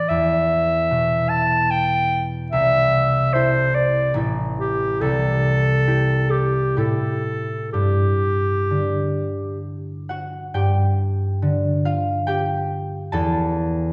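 A bright, solo clarinet melody and a mellow, ringing, fingerpicked concert harp begin together in this pastoral, dreamy impressionist classical duo, a rubato passage in 3/4 set in a reverberant recital hall heard from further back, with the clarinet stopping at 9.6 seconds so the harp carries on alone until the passage is cut off at 13.9 seconds.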